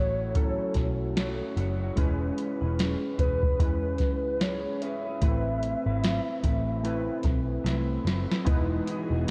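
A warbling, mellow synth lead carries the melody from the start, softened by tremolo, subtle chorus and analog delay. Beneath it sit a slightly broken-up electric guitar through a small old amp with drifting pitch, detuned lo-fi synth keys with a decaying chorused tone, and a dark, round, foam-muted picked bass placed up front. This is nostalgic, sunny bedroom-flavoured indie pop at a relaxed 74 BPM in 4/4 with a swung feel, in E major. A soft vintage rhythm box joins at 0.4 seconds, with a deep kick, crisp snare and metallic hats roughened by overdrive, and it plays a fill at 7.7 seconds. The chords move from A6 to E6 and Amadd9 before settling on Emaj7 at 8.5 seconds, where a full-bodied string machine cello pad with a slow attack and ensemble chorus arrives. The whole dreamy mix is steeped in lush hall reverb and cassette-tape character, and the passage is cut from a longer piece.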